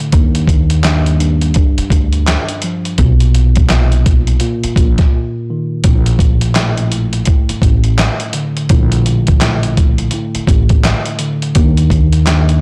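Boom-bap hip-hop with a confident, nostalgic mood, this short cut from a longer piece rolls at an easy, swung pace. A dusty soul sampler-style drum kit sits up front with a thumpy kick, a medium-tuned snare, hi-hat and handclaps, its sound gritty, compressed and tape-warm, re-recorded in a large room. An upright bass plays pizzicato underneath, woody and dark with steel strings and a touch of tube saturation, entering at 0.1 seconds. A mellow tine electric piano carries the accompaniment in a low register, clean and heard through its built-in speakers, filtered at both ends and sitting back in the mix. The chords move from Ebmaj9 through Bmaj7(no3) to Bbmaj7 before landing on Eb, with a brief break from 5.1 to 5.8 seconds, and the whole recording has a blown-out, overdriven character set in digital ambience.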